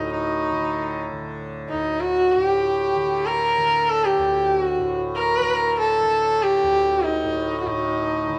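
A moderate recital-hall reverb surrounds this brief Hindustani classical fragment, cut from a longer piece, with a meditative, devotional mood. A single bowed sarangi carries the melody, sitting up front with a clear, earthy tone, light vibrato and gliding portamento, while its sympathetic strings add a faint resonant halo. Beneath it, an acoustic tanpura sounds its drone from the start at 0.0 seconds, softly plucked with a buzzing, shimmering character and set well below the sarangi in the balance. Both instruments play together throughout, until 8.4 seconds, moving in an unhurried triple metre. The sarangi's melody stays within a narrow middle register, and its gliding lines hover over the low, steady drone.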